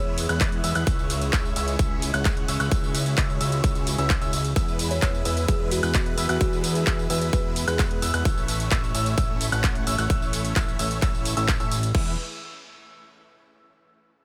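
A huge, detuned supersaw lead with a phaser carries the riff through the drop of this anthemic, euphoric festival progressive house excerpt, over a punchy, overdriven electronic kick up front, a layered big-room kit of handclaps, hi-hat, crash, ride and tambourine, a fat, saturated analog bass pumping to the sidechain, warm, short-sustain grand piano arpeggios in the background, very quiet veiled strings played con sordino, and a woody, buzzing kalimba melody with digital delay that returns at 4.9 seconds.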